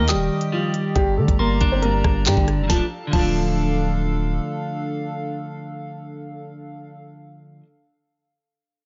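A dry, dark-toned recording with its highs rolled off, this short cut from a drill track has an ominous, menacing half-time feel. A natural-sounding baby grand piano with short sustain carries the melody through a low-pass filter, while a soft, pure FM bell adds a gentle second line in the background, colored by chorus, tremolo and delay. Both stop at 4.0 seconds. A clean, picked electric guitar sits up front under its own low-pass filter, and a hollow, flute-like pad holds detuned, mellow chords with a slow attack. A deep sine 808 bass with long, decaying notes anchors the low end, and an electronic drill kit of knocking kick, sharp snare, crisp hats, handclaps, rim clicks and crash drops out at 3.3 seconds, while the guitar rings on until 7.7 seconds.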